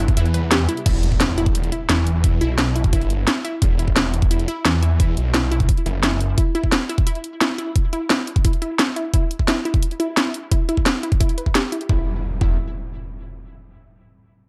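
A dark, warm production with light reverb and a digital ambience frames this aggressive slice of dark technical drum and bass, cut from a longer piece, running at 174 BPM in straight 4/4 in E minor. A very quiet, swarming drone of detuned, wave-folded tones holds a C chord for only the opening 0.8 seconds, while a lush, punchy unison pluck spins arpeggios through the whole passage with sidechain pumping and dub echo. A snarling, detuned sawtooth bass with tube saturation and a moving notch growls up front, drops away at 6.4 seconds, and returns near the end. The overdriven drums, re-recorded in a small room, put a cracking snare, bright hats and crash cymbal over a knocking electronic kick that briefly falls out early on. An electronic impact sounds in the background as the harmony shifts to Emadd9 and a filter sweep begins to move across the pluck, and a second impact arrives at 11.9 seconds as the kit stops for a short closing section.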